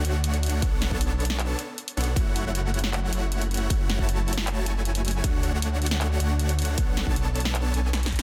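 A dense, heavily limited, nearly dry mix carries this dreamy, lush future bass excerpt in F# minor at 156 BPM with a half-time feel, where huge, bright supersaw chords pump with sidechain and tape echo over a thick, saturated detuned saw bass treated with chorus and pumping, a big-room dance kit of handclaps, hi-hat and punchy snare, and a layered electronic kick that enters at 0.6 seconds, moving through Dmaj7, Bm9 and F#m7 before a drum fill at 7.9 seconds.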